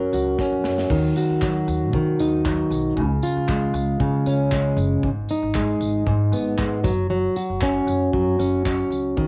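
A fingerpicked, plugged-in jumbo steel-string acoustic guitar sits up front, its full-bodied tone carrying the accompaniment from the very start in this sunny, carefree acoustic pop piece cut from a longer track. Beneath it, a pizzicato upright bass with steel strings adds a woody, dark low end, lower in the mix. A modern studio kit enters at 0.1 s, and a short fill from 0.4 s leads into the main section at 0.9 s; its parts (punchy kick, medium-tuned snare, bright crash, handclaps and tambourine) carry a cassette-tape coloring. The groove moves at a relaxed, moderate pace with a light sixteenth-note swing, and the harmony runs through F#, D#m, C#, G#m and lands on F#5. The whole thing has the feel of a home cassette recording in a moderate studio room, with a short, natural ambience around the instruments.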